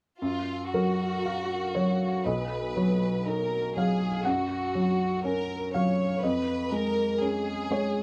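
Set at 60 BPM in 4/4 with a rubato feel, this brief neoclassical piece for piano and strings unfolds in F# major with a hopeful, intimate mood, cut from a longer work. A felt-muted upright piano carries the accompaniment from 0.2 to 8.0 seconds, its soft, mellow tone shaped by thin felt and placed up front across a span from B1 to F#5. Over it, a chamber violin section sings the melody between E#4 and C#5, bowed with vibrato and a focused, smooth top that gives the ensemble a rich, close presence. The harmony moves through F#maj7, Bmaj7, F# and C#7/E#, lending the passage a gentle, searching lift. Light reverb and close, detailed microphones keep the sound natural and near, so both the muted hammers and the violins' bowing come through clearly.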